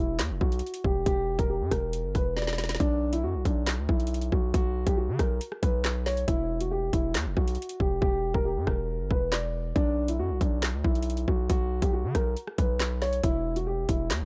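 A half-time 4/4 drill groove at 138 BPM drives this tense, ominous hip hop cut in B harmonic minor, where an up-front electronic kit of hard-clipped kick, woody snare, rim clicks, handclaps and metallic hats enters at 0.2 s, fills at 2.4 s and mutes its hi-hats from 8.0 to 9.8 s, alongside a heavy, aggressive, distorted 808-style bass with a noise layer and a dark, boxy, intimate grand piano melody whose action noise comes through a low-pass filter and tape echo, over Em and B5 chords in a dry, gritty hardware sound.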